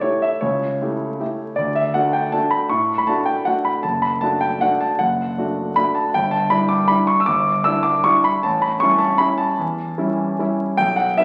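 Graceful and playful, this brief 11.2-second excerpt of a classical piano waltz in D major sways in a rubato 3/4 at roughly 142-166 BPM, with a solo grand piano, intimate and up front with audible action noise, ranging from F#1 to E6 through chords moving from A7/C# to D, D/F#, Em7/G and A7, all heard through the lush reverb of a scoring stage and the crackle of a very old 78 rpm record.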